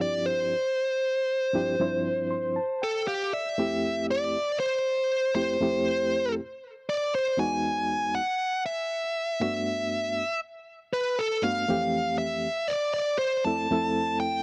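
Jazz with a bright, funky mood at 118 BPM in a light 16th-note swing, featuring a bluesy, overdriven lead guitar picking the melody up front with a distorted bite, while a barky, reedy electric piano with tremolo plays the accompaniment and a fill from 2.0 to 3.6 seconds before the harmony settles into F major, all captured in a dry, close 1970s-style studio sound with light reverb and cut from a longer piece.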